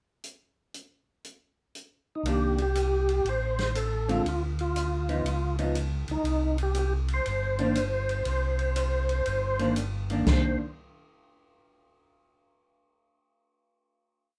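Soulful and bluesy, this complete soul jazz organ trio piece swings at 120 BPM in 4/4 in C dorian. An open acoustic drum kit starts the pickup bar alone at 0.2 seconds, playing a ride cymbal pattern with sticks over dark cymbals, a medium-tuned snare, a boomy kick and hi-hat, with crash accents, in a natural small-room sound. At 2.2 seconds two tonewheel organ parts come in up front. One plays a free, lightly overdriven, percussive melody with second harmonic percussion, key click, chorus vibrato and a slow rotary speaker. The other supplies a mellow, round, clean two-feel bass line through its own slow rotary. A clean, picked hollow-body electric guitar adds syncopated comping in three- and four-note chord shapes through changes such as Cm9, Dm6 and Db9. The trio settles on a closing Cm9 at 10.3 seconds in a moderate studio reverb, heard from further back in the room.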